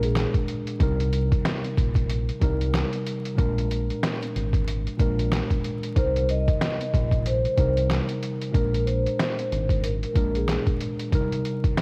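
This tough, dark boom-bap hip-hop excerpt opens with a sampler-style drum kit, a tine electric piano, a deep dub fingered electric bass and a fleeting touch of vibraphone all sounding at once, at 93 BPM in 4/4 with a swung sixteenth-note feel in C minor. The drums are compressed, pitched down and gritty, sitting up front with a thumpy kick, a medium-tuned snare, hi-hat and handclaps, colored by cassette tape. Beneath them the bass is round and shadowy, direct and amped, holding low notes under chords that shift between Bb7 and Cm7. The electric piano sounds worn and slightly out of tune yet clean, filtered at both ends and softened by tape, while the vibraphone returns at 6.0 seconds with a mellow, metallic ring, soft mallets and fast motor vibrato in a boxy small room. The bass and vibraphone stop at 10.6 seconds, leaving keys and drums to carry on to 11.8 seconds over vinyl crackle and a home-cassette ambience.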